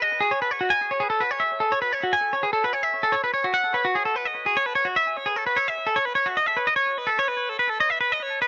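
Playful and bright, this short rock excerpt features a lone twangy electric guitar carrying the melody from 0.0 to 8.5 seconds. The tempo is 297 BPM counted in eighth notes, in an odd 7/8 metre with a straight feel, and the music sits in A lydian with tuning pitched slightly low at A4 = 437 Hz. The clean, picked guitar stays up front and moves between F#4 and G#5, with analog delay trailing its notes. A digital ambience gives the mix a heavily echoing space around the solo line. The opening section gives way to a new passage at 6.4 seconds, and the clip is cut from a longer piece.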